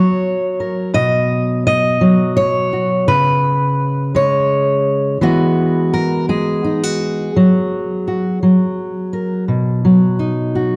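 Folk piece for solo fingerpicked steel-string acoustic guitar in B major, unfolding in a slow, nostalgic and pastoral 6/8 at 56 BPM across a short 10.8-second excerpt cut from a longer work. The full-bodied dreadnought sits up front, ranging from B2 to D#5 as it moves through chords like C#5, Eadd9 and F#sus4 before settling on B at 9.5 seconds. A moderate concert hall reverb and a dark production frame the playing.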